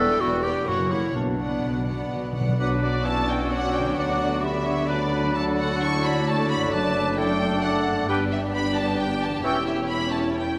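Lush, distant symphonic violins carry the melody from the start of this stormy, restless classical passage in B minor, moving in 3/4 at 131 BPM. Beneath them sit a bright clarinet, expressive close chamber violins, very quiet violas, ringing thumb-plucked harp arpeggios, woody, dark cellos and smooth double basses. Round, dry timpani on soft mallets add a fill from 1.1 seconds; at 2.6 seconds a clear oboe, an airy flute section, a soft-attack bassoon and mellow sustained French horn chords join, all set in a reverberant concert hall as the harmony passes through Bm, D and G to a diminished chord.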